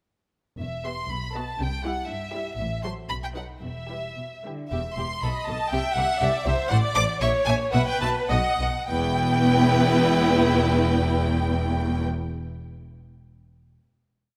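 A quick classical-period movement for string orchestra, this complete piece in 2/4 has an urgent, restless mood and a flexible, rubato feel, with a marked slowing from 6.2 to 8.9 seconds before a closing E minor chord. The violins carry the melody with rich, expressive vibrato, mixing repeated notes and sustained chords, while a second violin line sits up front in the mix with pizzicato accompaniment. The violas bring a clear, focused tone to a counter-melody, sustained chords and pizzicato accompaniment. Beneath them, the cellos sound distant and lush, sliding between notes with portamento as they shift between bowed sustained bass, repeated bass notes and pizzicato. The double basses double that bass line with a soft attack and a warm, bowed body, also turning to pizzicato. The whole ensemble sits in a moderate concert hall reverb that gives the sections a sense of space.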